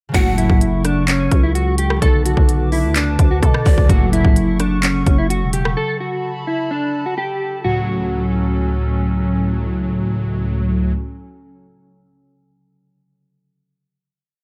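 A trap kit with a hard-clipped kick and crisp hats drives this dark, eerie hip hop piece at 128 BPM in a half-time feel, together with a growling 808-style bass whose long sub notes follow the kick with pitch slides, until both stop at 5.8 seconds. In F# minor, a clean, mellow electric guitar loops the melody over fingerpicked concert harp chords, while a warbly, lo-fi tape-like pad sustains underneath and breathy, reedy pan pipes add brief counter-melody touches with tape echo. Fat, brassy analog synth stabs with a filter sweep punctuate the hook and carry the closing F# minor chord from 7.6 seconds, all set in a digital ambience.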